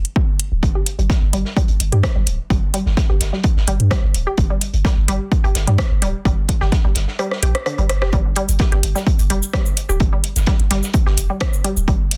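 A punchy, deep sub bass with a pitch-drop attack and sidechain pumping opens this quirky, cool minimal techno cut alongside an overdriven house kit of metallic hats, rim clicks and shaker, with a layered, up-front electronic kick arriving at 0.2 s and a muffled, lo-fi vintage kit of filtered hats and snare tucked low beneath it. A squelchy, resonant blip pluck with detuned square and sawtooth tones, chorus and digital delay runs through the groove from 0.8 s. The kick drops out for a drum fill at 7.2 s before the drop lands at 8.1 s, all in a dense, heavily limited and dry mix.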